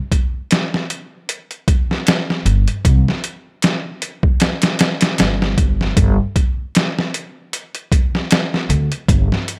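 A gritty, pitched-down sampler-style drum kit with a thumpy kick, medium-tuned snare and hi-hat drives this brooding, smoky trip hop excerpt at 77 BPM with a light 16th-note swing, its overdriven, compressed beat sitting up front from the start, while a woody, growly pizzicato upright bass joins at 2.5 seconds in the low register under a light digital reverb.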